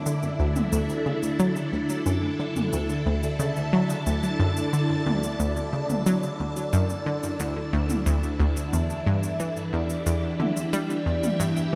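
Cosmic and luminous, this short excerpt of sequencer-driven ambient space music sets a swirling, phased string machine holding sustained chords over a round, detuned analog pluck riff with tape echo and overdriven electronic cabasa and toms, all soaked in a dreamy hall reverb, until a mellow, warbling horn-like synth lead enters at 8.7 s as the harmony moves from D to Em7.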